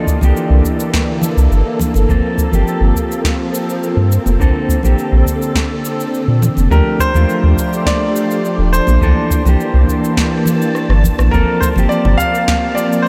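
A round, deep sine sub bass sits up front and carries the weight of this smooth, relaxed sunset chillout excerpt in G minor, moving at 104 BPM in a straight 4/4. Beneath it, an overdriven analog electronic kick drum and a layered electronic kit of cabasa, punchy snare, rim click and congas, re-recorded in a small room, hold the groove, with a drum fill at 10.7 seconds, while very quiet acoustic congas with hard hands add a bright edge. A dark, clean, fingered electric guitar plays accompaniment through delay, and a silky vintage string machine with slow attack and long release holds sustained chords under ensemble chorus. A brilliant baby grand piano, intimate enough that its action noise is audible, carries the melody through tape echo, briefly at the start and then again from 6.7 seconds. The harmony drifts through lush extended chords such as C13, Gm11, Bbmaj9 and Ebmaj9#11, and shimmer reverb on the piano, guitar and strings, together with a huge ambient room, leaves the whole mix dreamy and soaked in reverb.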